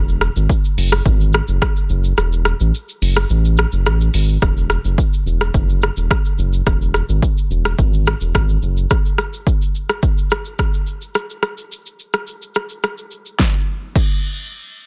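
Romantic and sunny, this afrobeats excerpt pairs a round, deep analog bass that plays up front until 8.9 seconds with an electronic deep house drum kit of punchy kick, fat softly clipped snare, rim click, hi-hat, shaker and crash, whose kick drops out between 2.2 and 4.4 seconds, all set in a dry, dense, heavily limited modern master.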